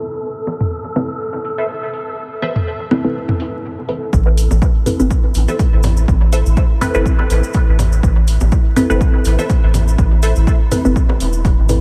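A cavernous, meditative dub techno excerpt at 123 BPM in A minor, with light digital ambience, vinyl crackle and a low-pass haze over the whole mix, opens on a muted, dark filtered chord stab with phaser, tape and dub echo under a breathy, wind-like noise texture lush with chorus, while a filter sweep runs through the first 4.1 seconds and a filtered hi-hat and tape-warm electronic bongos and toms join at 0.5 seconds. Crisp, bright wavetable chord stabs with ensemble chorus and dub echo recur in short bursts, first at 1.6 seconds. At 4.1 seconds a punchy, up-front analog kick, a deep, round sub bass and a grainy acoustic cabasa arrive, the stab, texture, bass and percussion pumping with the sidechain as a filter sweeps across the synth stab over an Amadd9 chord.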